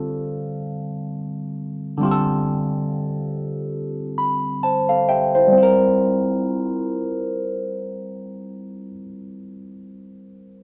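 A barky, clean tine electric piano carries this short R&B excerpt, sitting up front through a combo amp with a phaser coloring its tone. The mood is introspective and soulful, moving at a relaxed 64-74 BPM in 4/4 with a swung sixteenth-note feel. The piano opens on a Dm7, slowing down over the first 5.5 seconds and slipping in a fill from 3.7 to 5.5 seconds before the harmony shifts to C7sus4. Its range spans from D3 up to B5, giving the part a warm body. A moderate large-studio reverb adds a sense of a live room around the instrument, and the piece breaks off at 10.6 seconds as a fragment of a longer performance.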